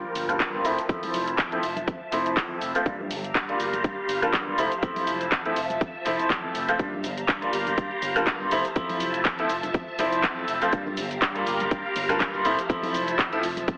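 A swung sixteenth-note groove in 4/4 drives this funky, sensual fragment of filtered disco house. A punchy, layered electronic kick arrives at 0.4 s beneath a dry analog drum machine of handclaps, hi-hat and shaker, soft-handed maracas and congas, and a round, dark fingered electric bass that pumps with the sidechain. Over this, a brilliant, worn concert grand piano with 12-bit sampler grit and phaser trades between Gm7 and Fmaj7 alongside a swirling, warbling string machine with slow-attack chords, both pumping under a filter sweep that runs through the whole clip and a heavily compressed AM-radio finish.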